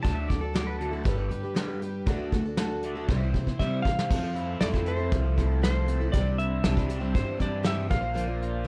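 Jangly and hopeful, this short folk rock and heartland rock excerpt moves at 118 BPM in a straight 4/4. A shimmering, octave-doubled twelve-string acoustic, a crunchy double-tracked overdriven guitar riff with phaser, a growly pizzicato upright bass and a soft brush kit with dark cymbals and a punchy kick carry it from D to G and C, while a pedal steel guitar adds a brief second line in the opening 2.0 seconds. During a drum fill, a dark, clean lap steel slide melody with analog delay enters at 3.6 seconds, a very quiet, mellow upright piano joins as the harmony shifts to Fmaj7, Cadd9 and Bbadd9, and a reedy accordion arrives at 8.1 seconds with sustained chords, all in a dark production with a small-room reverb.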